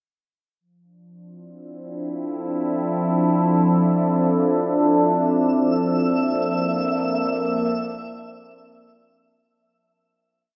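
Ambient music in free time and D minor, spacious and reflective, tuned slightly high at A4 = 442 Hz. An evolving wavetable pad sits up front from 1.9 seconds, holding sustained chords between F3 and A4 with a slow attack and long release. Its detuned, warbling, vintage tone morphs through a phaser and its own reverb as the harmony shifts from Dm9 to C13sus4 at 5.0 seconds. A twinkling granular texture enters at 5.5 seconds, placed quieter and higher between E5 and E6, where an FM tone with an octave-up shimmer sparkles around a held high note. The whole piece is bathed in a huge ambient reverb with a 7.4-second decay, giving a dark, warm production. There is a fade-in on the ambient pad from 0.6 seconds and a fade-out from 5.0 seconds.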